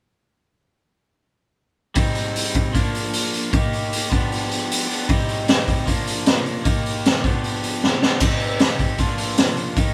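At 1.9 s a crunchy overdriven electric guitar and a raw garage drum kit come in together, launching a cool, bittersweet indie rock riff in C minor at a straight 154 BPM, cycling through Cm, Bb, Eb and G7. The picked guitar sits up front with a bright bite, while the gritty, saturated kit pairs a punchy kick and high-tuned snare with hi-hat and crash, its top end rolled off. A drum fill at 7.8 s leads back to Cm, and light reverb gives the excerpt the feel of a band playing live in one room.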